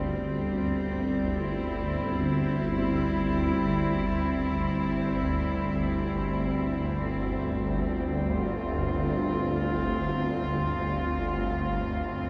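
A vast, wet reverb with an 8.1-second tail surrounds this dark ambient drone fragment, giving it a cavernous, desolate feel. Deep in the low register, a swarming drone of detuned sine tones warbles and shifts, its granular, vintage texture sitting up front with its own built-in reverb and a tense, unsettling edge. Above it, a symphonic cello section bowed sul tasto holds sustained chords with a soft attack, its pure, floating tone sounding distant through a shimmer reverb. Both parts sound together throughout the 12.3 seconds, moving in free time. The harmony rests on C before shifting to G7sus4 at 7.4 seconds, leaving the passage suspended and unresolved.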